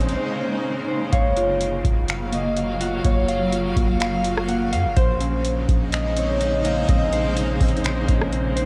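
Atmospheric cloud-rap in a melancholic, spacious mood, this short cut from a longer piece sits at 125 BPM in a half-time 4/4 feel in Bb minor. A booming analog drum machine sits up front with a deep kick, metallic hats, finger snaps and rim clicks, its dry, tape-warm punch dropping into a brief break from 0.2 to 1.1 seconds. Beneath it a long sustained 808-style bass hums deep and sine-round, decaying after each fast attack. A concert harp carries the fingerpicked, ringing melody through a low-pass filter and analog delay, while a dark, clean electric guitar plays arpeggios with the same filtering and delay. A cloudy, detuned granular pad holds bright, blurred chords that pump against the beat, and an airy, breathy wind-like noise layer drifts in the background. The harmony moves from Bbm11 to Gbmaj7 at 1.1 seconds and returns to Bbm11 at 5.0 seconds, all wrapped in a homemade cassette sound with light digital ambience.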